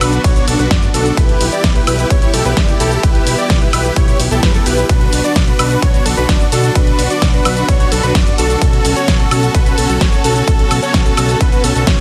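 Opening on sustained, lush bowed string chords in the background alongside a bold detuned unison lead playing arpeggios, a huge, thick supersaw riff with delay and a fat, saturated analog bass, all four pumping with sidechain, this powerful, anthemic festival progressive house excerpt in B minor at 129 BPM moves through Bm, Em and F#m while a big-room dance kit with a huge snare, hi-hat, ride, shaker and woodblock plays throughout, joined by a punchy, up-front electronic kick that enters at 0.2 seconds.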